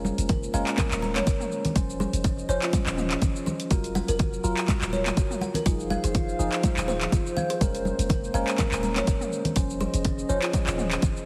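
Afro house at 123 BPM with a warm, spiritual mood, built on a punchy, overdriven electronic kick up front, a house kit with bright hats, handclaps, shaker and toms, soft-handed high-tuned congas in the background, a deep, boomy 808-style bass pumping under the sidechain, woody kalimba arpeggios with tape echo entering at 0.3 seconds, worn, slightly out-of-tune electric piano stabs with phaser and tape echo, and a moody, detuned analog pad with lush chorus sustaining chords from Bbm7/F through Dbmaj7/F, Gbmaj7/F and Fm7, all pressed into a heavily compressed radio sound with light reverb in this excerpt from a longer piece.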